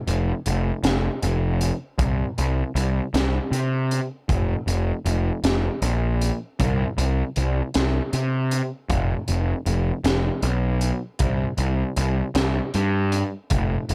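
Psychedelic rock in a slow 6/8 at 52 BPM, hypnotic and kaleidoscopic, where a bright, punchy fuzz bass with overdrive, picked in a range from F1 to C3, sits up front beside a gritty, saturated breakbeat kit of hi-hat, tight kick and high-tuned snare with a rolled-off top and analog delay, both playing throughout this short cut from a longer piece in an echo-heavy mix with light reverb.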